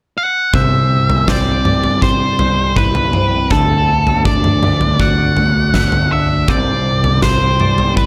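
A straight 4/4 pulse at 81 BPM carries this cinematic, soaring post-rock excerpt in C lydian, where a dark, distorted octave-fuzz lead guitar carries the melody up front from 0.2 seconds, joined at 0.5 seconds by a huge arena drum kit with a punchy kick, fat snare and toms, a growling overdriven fingered bass, and, set in the background, a bright twelve-string electric guitar picking phased arpeggios and a twangy electric guitar playing lush chorused arpeggios, the three guitars sharing a slapback echo over a C, D and C5 progression in a light small-room reverb.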